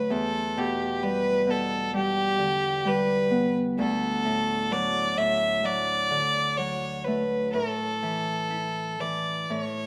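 A single bowed fiddle leads this Celtic slow air, its rich, smooth tone carrying a light vibrato and an even, smooth top as it sings the melody up front from start to finish. Beneath it, a fingerpicked Celtic harp supplies the accompaniment, its ringing acoustic strings reaching down into the low register and sitting close and present alongside the fiddle. The pulse is free and rubato in four, giving the line a breathing, unhurried shape that suits its nostalgic, pastoral mood. The harmony moves from Em7 to D and settles on A5 near 7.5 seconds, so the phrase stays open where the passage is cut from a longer piece. A moderate recital hall reverb surrounds both instruments with a gentle, natural sense of space.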